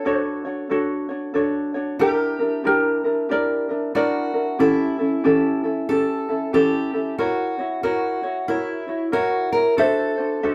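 Relaxed and languid, this swung Hawaiian piece in D major moves at 92 BPM, with a light, thumb-plucked ukulele melody that drops out at 4.4 seconds and returns at 9.8 seconds, a fingerpicked steel-string acoustic guitar with fresh strings and a concert tone carrying an up-front second line, and a second light, up-front, thumb-plucked ukulele playing warm accompaniment through chords from Dmaj7 to D7, all captured live in one room with moderate studio reverb.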